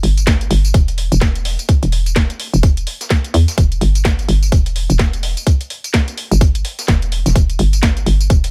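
A hollow, knocking FM bass with a dark, punchy fast attack pumps under sidechain from the start of this bouncy, swaggering bass house excerpt in E minor at 127 BPM with 59% swing on the 16ths, alongside a garage drum kit of cracking snare, warm hats and tambourine and a very quiet, gritty, tape-coloured breakbeat sampler-style kit with a medium-tuned snare, before a tight, up-front electronic kick lands at 0.3 seconds, with the kick and garage kit carrying a small-room sound inside a digital ambience.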